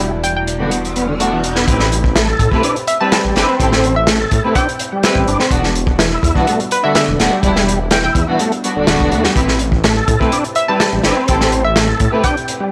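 A straight 125 BPM breakbeat groove in A minor drives this energetic, swaggering cut from a longer piece, where a crunchy, saturated breakbeat kit up front, a menacing detuned saw bass and a gritty overdriven tonewheel organ riff with fast rotary and tape echo play from the very start, pushing through a brief opening alongside dark pad and background riser into the drop at 1.7 seconds, as a hollow, bouncy square pluck melody with old-record colour and lush bowed string stabs ride over Em9 and Am9 chords in a dry, gritty small-room sound with vinyl crackle.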